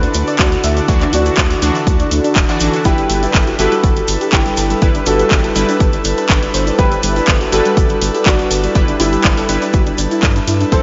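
Progressive house with a euphoric, hopeful glow, cut from a longer piece and moving in a straight 4/4 metre. An intimate baby grand piano carries the melody, its boxy tone and audible action noise drifting into a diffuse ambient delay. Beneath it, an airy, breathy pad holds sustained chords while a soft pluck spins chorused arpeggios in the background, both breathing with sidechain pumping alongside a deep, round analog bass. A house kit with bright hats and handclaps sets the groove from the start, with a grainy tube shaker faintly behind it. A punchy, overdriven electronic kick arrives at 0.4 seconds and sits up front, and a detuned supersaw stab with a cassette-tape colour joins at 0.9 seconds. The chords move from Dadd9 to G6, and the mix is dreamy, soaked in a lush hall reverb and kept dark with nothing above 7.5 kHz.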